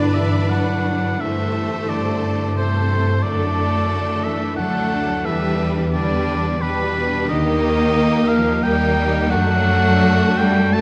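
Classical, a slow romantic movement for symphony orchestra in 3/4 with a rubato feel, solemn and melancholic, cut from a longer piece. A clear solo oboe sits up front on a second line above a lush violin melody with vibrato, while a background violin line, an even, smooth viola accompaniment, a background cello section and an expressive double bass section fill out the bowed ensemble. A very quiet harp rings through its arpeggios across the 10.8 seconds, and a wet scoring-stage reverb surrounds the orchestra as the harmony moves from G toward an Eb chord before settling on D/F#.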